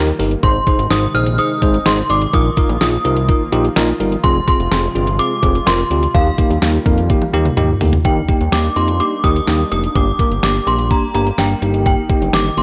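A fat, thick analog bass with a sawtooth edge sits up front in this cool, melancholic synth-pop excerpt at 126 BPM, joined at 0.2 seconds by a detuned 8-bit drum machine whose thumpy kick, medium-tuned snare, hi-hat and toms carry a sampler-style, tape-warm character and play a fill from 7.1 to 8.0 seconds. A bright, bell-like tine electric piano plays clean accompaniment over a very quiet, smooth analog pad with a soft attack and long release, while an inharmonic FM synth chime carries the ringing, mellow melody from 0.4 seconds, colored by ensemble chorus and analog delay. The chords move from Ab through Bbsus4, Fm and Ebadd9 before shifting to Ebmaj7, Gm and Eb/G, all in a dry, gritty cassette-tape sound with light reverb.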